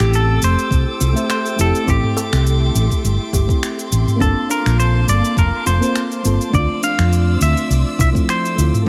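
Opening on a smooth Fmaj9 chord at 103 BPM with a gentle 16th-note swing, this sunset chillout excerpt layers a bright, twangy clean electric guitar melody with sampler grit and tape echo over a mellow FM electric piano with chorus and tape echo, lush bowed symphonic strings, woody kalimba arpeggios with tape echo, a dark, round hollow-body bass up front, a tape-warm R&B kit of cabasa, finger snaps and toms, and a glassy, drifting harmonics texture in the background, all set in a light reverb, while a soft electronic kick joins at 0.7 seconds as the chords move through Am7, Gm11 and Dm9.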